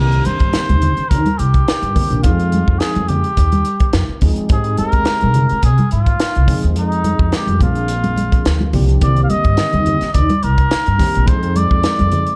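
A cup-muted trumpet carries the melody throughout this short cut from a longer electric jazz fusion piece, its soft, veiled tone shaded with vibrato and sitting distant and roomy in a jazz-style solo. Underneath, an overdriven tine electric piano played through a combo amp adds bright, gritty accompaniment coloured by analog chorus, moving through Cm9, Fm7, Abmaj7 and Bb9 in F dorian. A woody pizzicato upright bass with steel strings holds the low end, while a crisp fusion kit of hi-hat, punchy kick and high-tuned snare sits up front with a saturated, pumping small-room sound. Thick-skinned congas played with soft hands join at 0.3 seconds and stay in the background. At 106 BPM in 4/4 with a light sixteenth-note swing, the mood is funky and slick, framed by light reverb, studio ambience, a dark production and a faint mains hum.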